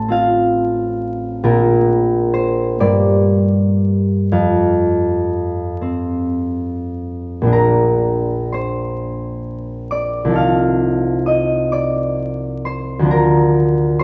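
A wet recital-hall reverb surrounds this short excerpt from a longer piece, with vinyl crackle beneath it. A solo concert harp sits up front, its thumb-plucked strings ringing with a warm, acoustic tone across a span from A1 to F6, and the mood is peaceful and dreamy. In Bb major and a slow, rubato 6/8 at roughly 33-47 BPM in dotted quarters, the classical piece drifts through its opening phrase before moving into a new section at 7.5 seconds that settles on Bb/D at 13.1 seconds.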